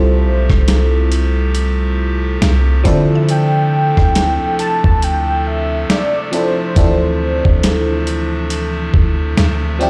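A velvety, detuned synth lead carries the melody with vibrato, chorus and tape echo in this tender, dreamy contemporary R&B excerpt with a swung sixteenth-note feel. Beneath it, a glassy FM electric piano with a bell-like attack supplies the accompaniment through chorus and phaser, while a hollow pipe organ clarinet stop holds sustained chords with a touch of chiff. A deep, boomy 808-style bass sits up front, and a very quiet woody mallet-like pluck adds a round, percussive texture until 6.1 s. The dusty sampler-style kit enters at 0.5 s with gritty, overdriven hi-hat, thumpy kick, rim click and snare, compressed and re-recorded in a small room. The harmony moves from Fmaj9 to Dm7, the lead drops out at 8.1 s, and the whole mix sounds as if played through a big sound system in a bare room with stone room reverb.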